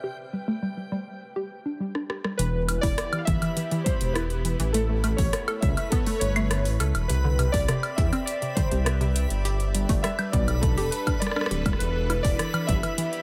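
An eerie, cerebral IDM excerpt at 102 BPM in E minor opens on a swirling phased analog pad, a warbly, dusty chorused pluck tracing arpeggios through dub echo, and a dreamy reversed texture swelling high above in its own reverb, before a short drum fill from a booming, tape-warm analog drum machine of congas, metallic hats, rim clicks and woodblock arrives at 1.9 seconds. From 2.4 seconds, nostalgic lo-fi synth keys carry a warbling melody through chorus and tape echo, while a dark, detuned sawtooth bass rumbles up front and a heavy electronic kick joins at 2.8 seconds. The harmony moves from Em through A and C to G6, all set in a digital ambience.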